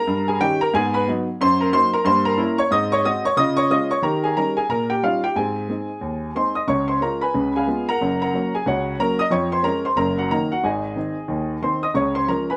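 A moderate studio reverb surrounds an up-front, clear and worn baby grand piano with an open, long-sustaining tone, playing a playful, swinging stride jazz solo in Db major at 182 BPM, moving through diminished and dominant seventh chords before a new passage begins at 6.7 seconds and settles on Db at 11.9 seconds in this short cut from a longer piece.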